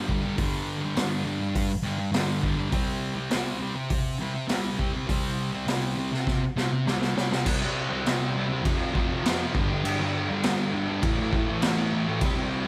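Garage rock with a menacing, gritty mood, this short cut from a longer piece moves at a straight 101 BPM in 4/4, tuned slightly sharp to A4 = 441 Hz. A thick, bright fuzz guitar, double-tracked and picked, drives the riff up front from the opening beat, moving from G5 to C5 before the second passage shifts through F5, G5 and A5. A raw garage drum kit of crash cymbal, hi-hat, punchy kick and medium-tuned snare sits close and mid-forward, its saturated tone carrying a rolled-off top. A drum fill from 6.3 to 7.5 seconds leads into the second section, which runs until the guitar stops at 12.7 seconds. A moderate stone room reverb gives the whole performance an enclosed space.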